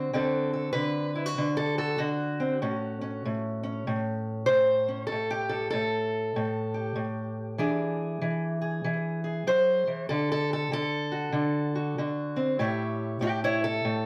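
A fingerpicked steel-string parlour guitar carries this short acoustic country blues excerpt on its own from 0.0 to 14.1 seconds, its dark, boxy tone sitting up front with a slapback echo. The mood is gritty and rollicking, moving at 96 BPM in 4/4 with a swung eighth-note feel. The guitar ranges from A2 up to E5, working through a dominant-seventh blues progression of D7, A7 and E7 before touching a plain D and landing back on A7. Close, detailed microphones capture the guitar, while a moderate studio reverb adds a modest sense of room around the instrument. Cut from a longer piece, the passage plays as a single continuous section of solo guitar.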